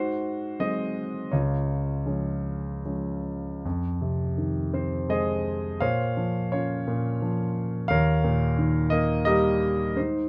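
In 3/4 with free rubato, moving between 72 and 90 BPM, this short classical passage for solo grand piano has a sunny, relaxed mood. The piano sits up front with a polished, present tone, spanning Db2 to F5 under light reverb and a dark production. Its lyrical line moves from Ab7 to Db, then at 3.6 seconds shifts into a new section built on Fm7, Bbmadd9 and Eb7 before the fragment breaks off at 10.3 seconds.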